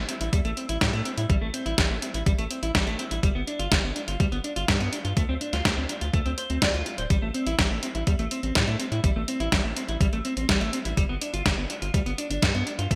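Danceable and bittersweet, this italo disco fragment, cut from a longer piece, rides a straight pulse built from a thumpy, sampler-style electronic kick drum and a clean 12-bit drum machine whose up-front hi-hat and medium-tuned snare carry gated reverb. A round, deep analog bass with tube saturation enters at 0.0 seconds, while a dark, picked clean electric guitar plays up-front arpeggios through delay over chords moving from Am7 to G7(no3) and Dm7. The bright 1980s-style digital production sits in light reverb and digital ambience.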